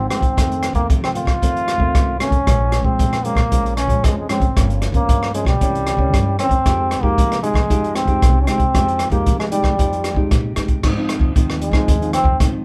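A bright, vintage-toned trombone with light vibrato carries the melody over dark, thumb-plucked nylon-string guitar and woody pizzicato upright bass in the background, joined almost at once by an up-front acoustic drum kit with dark cymbals, boomy kick, hi-hat and rim clicks, giving this lively, yearning samba-choro fragment the feel of a band playing live in a small room before the trombone takes a solo at 10.8 seconds.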